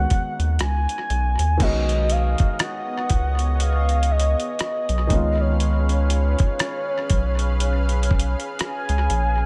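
This contemporary R&B excerpt moves at a slow 60 BPM in 4/4 with a swung sixteenth feel, its tender, smooth mood resting on a B69 chord that shifts to C#7 at 5.1 seconds. A mellow, horn-like synth lead carries the melody in a round, vibrato-touched voice, colored by chorus, phaser and tape echo. Beneath it, a felt-muted upright piano plays soft, intimate accompaniment with audible action noise and short sustain, while a rubbery square bass sits up front with a hollow, bouncy, dark tone. A dusty soul sampler-style kit of kick, hi-hat, rim click and crash adds gritty 12-bit character, a thumpy kick and tape echo. From 1.6 seconds a lush unison pad fills in sustained chords, thick, airy and detuned under chorus, and the whole piece sits in an echo-heavy digital ambience.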